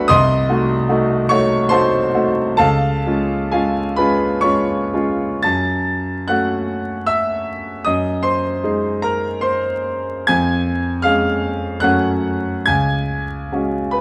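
A clear, up-front concert grand piano with a deep bass and an open tone carries this mournful, yearning romantic nocturne in a rubato 3/4, ranging from C2 to A6 through darkly shifting harmonies such as Cdim7, F#m and G#7/F#, with a contrasting second section from 5.4 seconds until the cut at 14.0 seconds, set in moderate stage reverb, captured with close, detailed microphones and overlaid with vinyl crackle.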